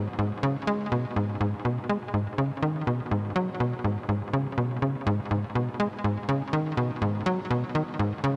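A tight sequencer bass plays alone through this hypnotic, cosmic ambient excerpt in G# minor, moving steadily at 123 BPM in a straight 4/4 across its 8.4 seconds. Up front and punchy, its nasal sawtooth and square-wave tone has a fast-attack filter pluck that decays and evolves, ranging from G#2 to G#3 with delay added. A wet, huge reverb with a 7.4-second tail surrounds it, and a cassette-tape character colors the sound.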